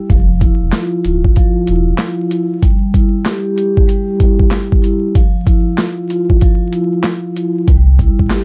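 Boom-bap hip-hop at 95 BPM with a swung 16th-note feel, this soulful, warm cut opens on a mellow vibraphone played with soft mallets, its ringing metallic tone carrying a slow motor vibrato and a vintage, band-limited cassette character. A gritty, compressed sampler-style drum kit with a thumpy kick, medium-tuned snare, handclaps and hi-hat sits up front throughout, while a deep, full sine-and-triangle sub bass with octave plays from 0.1 to 1.9 seconds and returns at 7.7 seconds. The chords move from Dmadd9 to Em/G, drop out briefly, then land on C, all within a dark, dry production dusted with vinyl crackle.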